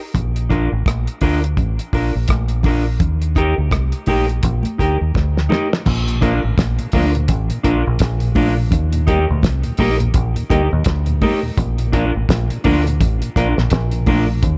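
A cloth-damped, thuddy drum kit with a fat snare and dark cymbals opens this sunny, uplifting roots reggae excerpt at 84 BPM in Bb major, joined at once by bright, high-tuned congas in the background, a deep, round dub bass up front and a clean, fingered electric guitar, all swaying between Bb and Eb with a swung sixteenth-note feel. A drum fill at 5.1 seconds leads into the second section, where a soft, flute-like tonewheel organ enters at 6.1 seconds behind the band through a slow rotary speaker. The whole recording sits in a small room with a cassette-tape character.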